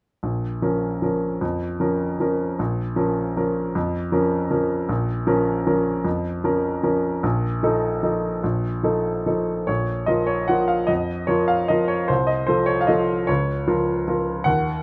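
Nostalgic and wistful, this short classical piano waltz in Bb minor moves in 3/4 with a flexible, rubato feel, its tempo drifting between roughly 137 and 162 BPM. A clear, present grand piano plays alone from 0.2 to 14.8 seconds, ranging from Bb1 up to Gb5 and sitting up front under close, detailed microphones with light reverb. Cut from a longer piece, it moves from Bb minor to an F7 over a Bb bass, then shifts into a new section at 9.7 seconds before settling back toward Bb minor.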